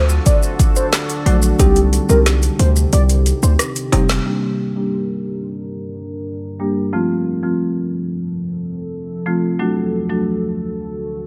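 Dancehall in G minor at 90 BPM, tough and bouncy, cut from a longer piece. A punchy, heavy 808-style bass, close acoustic maracas and timbales, and an overdriven afro-pop kit with deep kick, woody snare, metallic hats, handclaps and rim click drive the opening, with the kick muted from 2.9 seconds. Meanwhile a velvety sawtooth synth lead with chorus, delay and vibrato carries a short melody, and a rosewood marimba with sidechain pumping joins at 1.3 seconds. Over D, Cm, Gm, F and D chords, a moody, detuned pad with ring modulation and built-in reverb sustains throughout, and from 4.3 seconds a filter sweep runs as the pad and marimba continue on their own.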